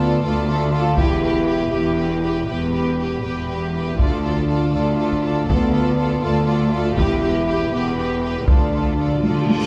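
Dramatic and relentless, this cinematic orchestral film-score passage in D dorian moves at 80 BPM in 6/8, with lush vibrato violins carrying the melody above a second violin line, smooth violas, mellow, distant French horn chords, and focused double basses beneath background cellos, while hard-stick taiko drums drive from 1.0 s, soft-mallet timpani enter at 8.5 s and a huge, dark cymbal swell arrives at 9.1 s, set in a reverberant recital hall heard from further back.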